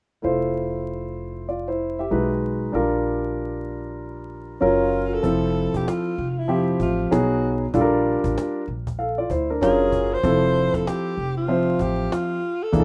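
Swung sixteenths in 4/4 give this jazz-hop piece a relaxed hip hop sway, its mood both warm and cool. A dark, mellow grand piano sits up front with long sustain, moving through major-seventh and sixth chords over a woody, thumpy pizzicato upright bass on gut strings. A breathy, close-miked alto saxophone with jazz vibrato and tape echo enters at 4.6 seconds, followed at 5.2 seconds by a snappy cajon played with soft hands, all set in a rough home-demo mix with vinyl crackle and wet studio reverb.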